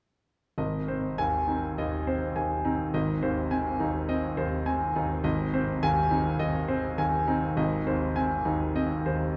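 A clear, smooth grand piano with a vintage, up-front sound and short sustain plays alone from 0.6 to 9.4 seconds in this brilliant, sparkling classical virtuoso study in Ab major, moving at a rubato 103 BPM in 4/4 across a range from Ab1 to Ab5 and resting on an Ab chord, all bathed in the long, wet reverb of a cathedral-like church or concert hall in a short passage cut from a longer piece.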